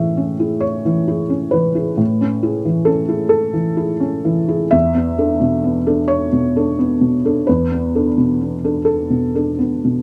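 A felt-muted upright piano plays alone from the start in this tender, intimate neoclassical minimalist fragment in A major, drifting at a rubato 44 BPM in 6/8 from Amaj7 to E7sus4 at 4.7 seconds, its dark, mellow tone sitting up front with short sustain, thick felt and audible action noise in a moderate studio ambience.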